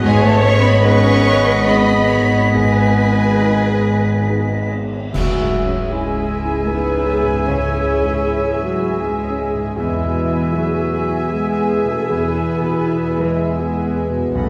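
Bittersweet and moving, this cinematic film-score excerpt drifts in a rubato 3/4 at roughly 68-80 BPM in C# minor, its chords passing from G#m to C#m at 5.1 seconds and on to E at 9.8 seconds. A dark, woody studio violin section carries the melody with vibrato and sul tasto bowing, while an airy, close-miked silver flute, a clear oboe with light vibrato and a distant, roomy clarinet weave second lines above and below, joined by a floating, pure symphonic violin section. Beneath them, an intimate grand piano with audible action noise and a lush viola section supply accompaniment, a very quiet French horn section holds sustained chords, and a ringing, fingerpicked concert harp spins arpeggios. Cellos and double basses anchor the bass with soft attacks, the basses standing out as the heaviest voice. A cymbal swell, clash cymbals and concert bass drum arrive at 2.5 seconds, bright in a small room, leading into a band accent as a dark, scooped duduk enters at 5.1 seconds with a folk-style solo melody. 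The whole is set back in a wet scoring-stage reverb, heard from further back in the room.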